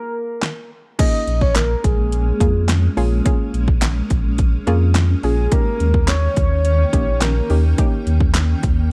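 A punchy electronic drum kit with a fat snare and metallic hats drives this energetic 106 BPM dance-pop cut in Bb dorian, where a deep sine sub bass with octave enters at 1.3 seconds with sidechain pumping beneath a blurred granular cloud pad, a gentle round pluck with chorus, a mellow octave-layered synth lead with vibrato and tape echo, and a very quiet group handclap, captured dry and close in a 1970s-style studio sound over Bbm7 moving to Eb7.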